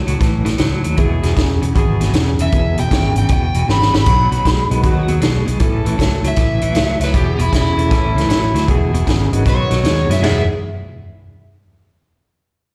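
Electric blues shuffle with a gritty, swaggering mood, cut from a longer piece and heard as a live gig through the venue's PA with hall reverb. A crunchy overdriven guitar carries the melody over a slightly broken-up, compressed guitar riff with tremolo, while a dark, round, foam-muted fingered bass and an up-front vintage kit with a punchy kick and dark cymbals drive the groove, with a drum fill at 3.7 seconds. From 1.0 seconds a percussive tonewheel organ with slow rotary speaker sits in the background, and a tight saxophone section adds smooth, soft-edged stabs; slapback echo colours both guitars, the organ and the horns.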